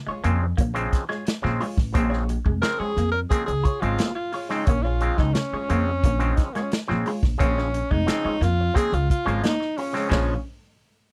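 A straight 4/4 funk groove at 88 BPM in Bb minor, driving and hypnotic, holds a single Bbm7 chord: a punchy-kicked big-band drum kit and a woody pizzicato upright bass sit up front, a twangy clean electric guitar plays a riff through phaser, and a bright, stringy auto-wah clav adds stabs. A dark, compressed hollow-body jazz guitar with wah sits quietly in the mix as accompaniment, and at 2.6 seconds a breathy tenor saxophone takes the melody up front with vibrato and scooped notes. This dry, close 1970s-style studio excerpt, cut from a longer piece, ends on a band accent at 10.1 seconds.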